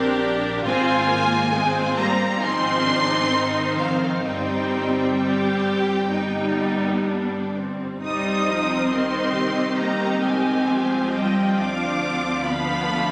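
Captured on a phone in a reverberant recital hall, this slow, yearning fragment of a romantic movement for string orchestra in C minor moves at 66 BPM with loose, rubato timing. Focused violas and a close, even second violin line carry the accompaniment over a rich, lightly vibrato double bass, and smooth cellos enter in the background at 0.6 seconds. At 0.7 seconds the high melody violins arrive up front, intense and lush, singing a melancholic line as the harmony drifts through Ab and G, reaches C minor, and closes on a B diminished chord over D.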